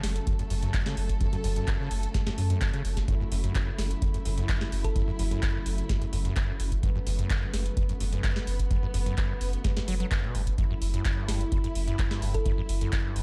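A straight 4/4 acid house groove at 128 BPM sets a hypnotic, raw mood in F# phrygian over a single F#m7 chord, with a deep, tape-warmed electronic kick entering at 0.3 s alongside a booming analog drum machine of crisp snare, handclaps and metallic hi-hats, while a squelchy, resonant sawtooth acid bass riff, filter-swept, overdriven and chorused, rides over a round sine sub bass with tube saturation and sidechain pumping, a lush, woody bowed string section holds sustained chords with vibrato that also pump with the kick, and a gentle, tine-like FM pluck with tape-worn chorus and digital delay appears only briefly at 4.8 s and 12.3 s in the background of this dark, dry, close-sounding excerpt from a longer piece.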